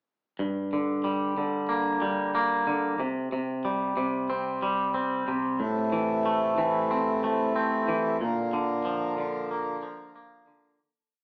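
In a straight 4/4 at 92 BPM, this brief post-rock piece in G dorian moves with a brooding, melancholic mood, a twangy, clean electric guitar picking fingered arpeggios up front from 0.4 seconds over chords from Gm through C5 and Am to Bb. At 5.6 seconds a reedy, breathing pedal harmonium joins with sustained, mellow chords. The band sounds live together in a stone room with a wet reverb and a small-speaker character, and the whole fades out from 8.2 seconds to its close at 10.8 seconds.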